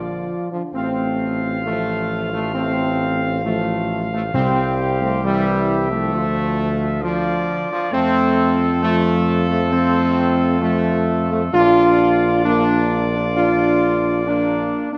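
A moderate scoring-stage reverb gives this brass passage, cut from a longer classical piece, a spacious, resonant sound. The mood is majestic and triumphant, moving at a stately pace in 4/4 over chords from Bb through F, C, Dm and back to Bb. A warm, distant trumpet section carries the melody, sounding roomy against the sustained chords of a tight trombone section placed up front and a mellow French horn section set in the background, both with light vibrato and smooth tops. A mellow solo tuba with light vibrato anchors the bass up front. Timpani struck with soft mallets on calf heads add a round accent between 4.3 and 5.6 seconds, close but tucked in the background.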